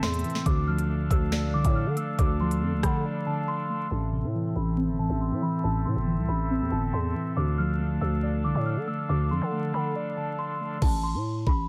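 A growling, buzzy 808-style bass sits up front through this cold, ominous drill cut, its fast attack decaying beneath a half-time feel at 139 BPM in A minor. The electronic drum kit, with knocking kick, sharp snare, rim click, crisp hats and crash, drives the opening until 2.9 seconds. It then drops away, a filter sweep begins at 3.9 seconds, and the kit returns at 10.8 seconds with its hi-hats muted. Above it, a delicate, bell-like celesta carries the melody with soft felt hammers, its sweet tone low-passed and trailed by tape echo. Muted, intimate synth keys fill the middle with a dark, full-bodied chorused accompaniment. A soft reed pipe organ on an oboe stop holds quiet sustained chords with chiff and tremulant, moving between D minor and A minor. The dreamy mix is soaked in lush hall reverb and dusted with vinyl crackle, and the passage is cut from a longer piece.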